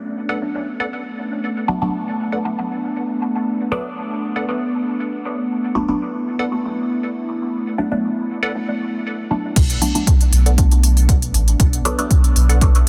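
A warbling, nostalgic pad with a lo-fi haze holds sustained chords from the start, pumping under sidechain and softened by chorus, while a crisp, bright wavetable stab riff and a muted, detuned dub chord stab drift through phaser and dub echo in this cavernous dub techno excerpt. At 9.6 seconds a round sine sub bass enters alongside a punchy, tape-warm kick set up front and a smooth-hatted deep house kit with a crash. The sound is dense and heavily limited, with light reverb adding to the hazy mood.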